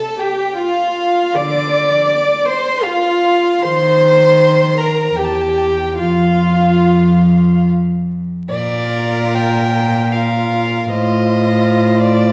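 Warm and lyrical, this slow romantic movement for string quartet in a rubato 3/4 is a short cut from a longer piece, with a rich first violin singing the high melody over a second violin's vibrato-tinged line and a dark viola accompaniment, all three bowed sul tasto with soft, airy attacks, while a pure, floating cello bass sits up front from 1.3 s, the whole heard from further back in a reverberant recital hall beneath vinyl crackle and a faint mains hum.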